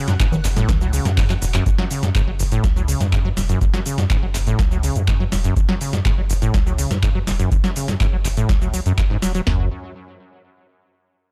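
This raw, gritty acid house cut in F# minor opens on a drop, with a faint, lush string machine holding a vintage sawtooth chord, shaded by phaser and ensemble chorus, that ends at 1.7 seconds. Underneath, an up-front saw acid bass plays a squelchy, resonant riff with a fast filter pluck, colored by analog chorus, cassette tape grit, tape echo and sidechain pumping. A round sine sub bass sits beneath it, also pumping, and from 1.7 to 9.5 seconds it carries a filter sweep. Two booming analog drum machines drive the straight 123 BPM groove. One has a dry, deep kick with toms and snare. The other adds overdriven congas, handclaps, shaker, metallic hi-hats and a crisp snare in a short room. A drum fill closes the opening, and the echo-heavy, nearly reverb-free mix ends with the parts dropping away just before 9.7 seconds.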